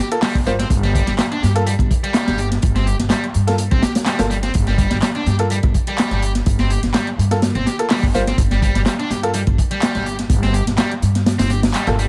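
An overdriven, picked electric guitar riff opens this raw, energetic breakbeat cut in G minor at 125 BPM with lightly swung sixteenths, joined almost at once by brilliant grand piano stabs, both trailing dub echo. Underneath, a crunchy, dark-toned breakbeat kit with a punchy kick sits up front beside a thumpy, woody pizzicato upright bass on gut strings, while an analog drum machine adds handclaps and hi-hat from a larger room. Vinyl crackle and small-room ambience color the sound, and the kick drops out at 11.3 seconds ahead of a band accent at 11.7 seconds.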